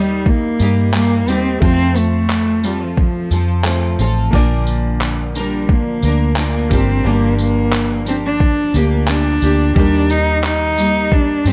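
Acoustic pop at 88 BPM in Bb major, carefree and heartfelt, where a dark, intimate bowed cello with vibrato and tape echo sings the melody up front over fingerpicked, full-bodied double-tracked nylon-string guitar, a woody, boxy upright piano in the background, and a round, punchy foam-muted electric bass, while a gritty, compressed sampler-style drum kit with thumpy kick, handclaps and tambourine joins at 0.3 seconds, all in a lightly reverberant, dark production moving from Eb through F and Bb to Gm7.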